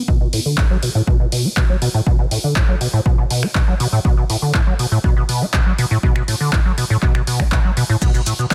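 A straight 4/4 pulse at 121 BPM drives this raw, trippy acid house fragment in B minor pentatonic, where a dry, punchy overdriven kick sits up front with an analog drum machine's crash, finger snaps, handclaps and hi-hat, while a squelchy, resonant square-wave acid bass riff, treated with overdrive, chorus, delay, sidechain pumping and a filter sweep, runs throughout, grainy acoustic maracas slip in quietly at 8.0 s, and the whole is set in digital ambience under a dense, heavily limited modern master.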